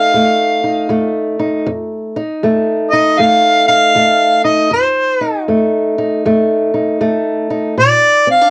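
Recorded at home onto cassette in a moderately ambient room, this short blues fragment, cut from a longer piece, has a swaggering, laid-back swing at 78 BPM in F mixolydian. A mellow, roomy harmonica carries the jazz-style melody with light vibrato and scooped notes, its tone colored by cassette tape. Beneath it, an old ladder-braced acoustic guitar is fingerpicked with a dark, woody, boxy sound from its worn strings, sitting on F7 before shifting to Bb at 7.8 seconds.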